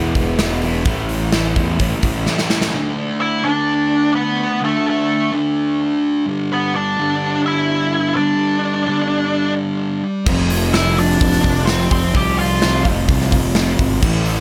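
A fuzz guitar riff, compressed and up front, opens this anthemic, bittersweet quiet-loud alternative rock excerpt at 128 BPM, together with a background overdriven semi-hollow guitar, a round, dark fuzz bass and a punchy big-room drum kit with bright cymbals, before a drum fill at 2.3 seconds drops the band away. From 3.2 seconds a dark octave-fuzz lead guitar carries the melody with tape echo over the lone fuzz riff as the chords move from D5 to G5. The full band returns at 10.3 seconds on an Fsus2, all in a dry sound with little reverb.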